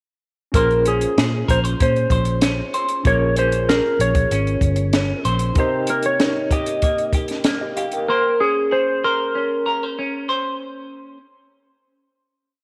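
A clean, dark lap steel guitar carries a motif-based slide melody up front with analog chorus and slapback echo in this wistful, hazy indie and bedroom-pop piece, set over a barky, lightly overdriven tine electric piano holding rootless chords with medium tremolo and short fills in the background, a foam-muted, round fingered bass playing a melodic line until 5.5 s, a compact cocktail kit with a high-tuned snare, punchy kick and relaxed, dry backbeat, and a semi-hollow guitar fingerpicking a roll pattern with subtle chorus and warbly pitch drift that rings on alone until 11.2 s, all within a light studio reverb.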